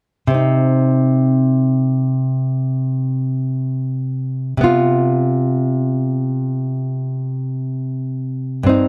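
Close, detailed miking and a light reverb place a solo nylon-string guitar up front, its fingerpicked classical accompaniment sounding warm, with finger squeak audible on the strings. This elegiac, melancholic fragment of a longer piece begins at 0.3 s on a minor chord and moves to a suspended chord at 4.7 s.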